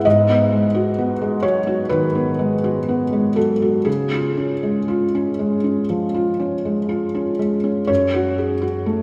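Rubato phrasing stretches a slow 4/4 pulse in this melancholic fragment of neoclassical minimalist piano, cut from a longer piece. A felt-muted upright piano plays solo through to 9.0 s, its mellow, dark tone sitting up front with audible action noise and a subtle chorus, moving from G#m7 to C# before turning to F#m at 7.9 s. A lush hall reverb soaks the intimate playing in a dreamy haze.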